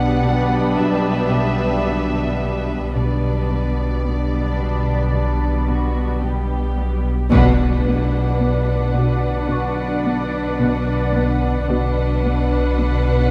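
In a straight 4/4 pulse at 55 BPM, this tense, mysterious suspense film-score passage in B minor sets veiled con sordino violins, carrying a melody and a second line, over lush muted violas, a muted cello section on the bass and another on a riff, and muted double basses on a low B, all bowed with vibrato, while a deep, detuned sawtooth pad with chorus and reverb holds chords above an ominous, rumbling wave-folded drone, a very quiet bell-like celesta adds delicate shimmer, and at 7.3 s a huge, bright impact lands with the band accent as the harmony moves from G/B to Bm, all within a moderate scoring stage reverb.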